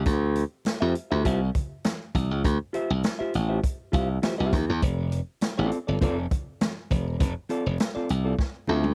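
A straight 4/4 funk groove at 101 BPM in D minor drives this short, funky excerpt: a glassy, bright slap bass sits up front with a swinging big-band drum kit, punchy in the kick, whose hi-hat, kick, snare and toms carry a cassette-tape colour, while very quiet, low-tuned congas with a thick skin add soft hand percussion underneath. At 0.8 seconds a dark, clean semi-hollow electric guitar enters in a supporting role, its fingered hollow-body tone set in plate reverb. The harmony moves from Dm11 to F6 at 4.8 seconds, and a drum fill at 8.4 seconds closes the passage in a dry, home-recorded cassette sound.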